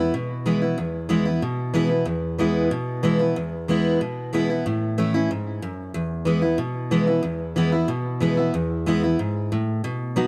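A straight 4/4 rock pulse at a brisk 186 BPM drives this rollicking, retro excerpt in E major, carried entirely by a solo picked steel-string acoustic guitar ranging from E2 to F#4. The dreadnought's full-bodied tone sits up front, touched by analog delay and a light reverb, as the harmony moves from E to A at 4.7 seconds and back to E at 5.9 seconds before the passage ends at 10.3 seconds.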